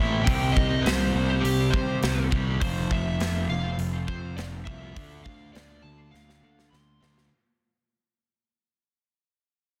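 A straight 4/4 pulse drives this short, dark and angsty cut from a longer quiet-loud alternative rock piece, with the big rock drum kit arriving at 0.3 seconds with a punchy kick, a medium-tuned snare given soft clipping, and hi-hat, all up front in a big room. A sludgy, dark distorted guitar grinds out the riff over a fuzzy, overdriven picked bass. In the background, a bright, twangy twelve-string electric guitar plays clean, compressed arpeggios through analog chorus. Over the top, a lead guitar through a small cranked amp sings a warm, overdriven solo melody with slapback echo. The whole passage fades out, and the drums close it with a fill starting at 6.1 seconds, all wrapped in studio reverb and a dense, heavily limited modern master.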